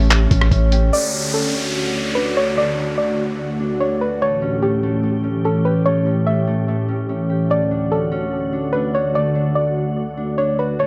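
A glassy, ethereal FM pad holds slow-blooming sustained chords throughout this dreamy, floating cloud-rap excerpt in D major at 146 BPM with a half-time feel, its ensemble chorus and built-in reverb shimmering over A7 and Dmaj7 harmony. A soft, round pluck with a dark, filtered tone and digital delay carries the melody, while a mellow concert harp rings out fingerpicked arpeggios beneath it. Within the first second, a deep, sine-like 808 bass and a muffled, tape-warm lo-fi drum kit with a thumpy kick, handclaps, hi-hat and rim click sit up front; then an electronic downlifter sounds from 0.9 to 4.2 seconds, all within a light reverb.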